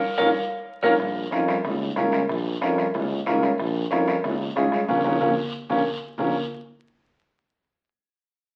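A fiery, danceable cumbia in Bb minor, this excerpt moves at 185 BPM in a straight 4/4 and sits on a single Bb minor chord. A twangy, picked electric guitar with spring reverb states the melody up front for only a moment, from 0.2 to 0.9 seconds. Alongside it from the start, a clear, woody upright piano carries the accompaniment through to 6.3 seconds, its action noise audible and its notes ringing with long sustain. Beneath it, a punchy tuba with vibrato holds the bass. The percussion is made up of a soft-beaten bombo set in the background, ringing congas heard at a distance in a large room, and a raspy guiro placed close. Band accents mark the opening second, with drum fills across its latter half, and both return in the stretch from 4.9 to 6.2 seconds. The whole recording has the crackle of a very old 78 rpm record inside a wet studio reverb.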